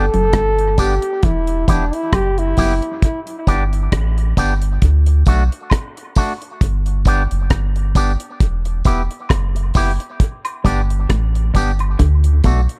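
A spacious mix with studio reverb opens this laid-back dub reggae excerpt at 67 BPM in G major, swung gently on the sixteenths over a G, Em and D progression. A punchy, distant trombone carries the melody with dub echo until 3.2 seconds, while a clean, twangy envelope-filtered guitar picks the accompaniment and a round, deep sub bass sits up front beside a dark, dry drum kit with a tight kick, hi-hat and rim click. A slightly broken-up, fingered guitar riff with warbly pitch drift and echo murmurs in the background at the start and returns at 10.6 seconds, and a vintage, band-limited layer of tambourine and woodblock adds echoing texture.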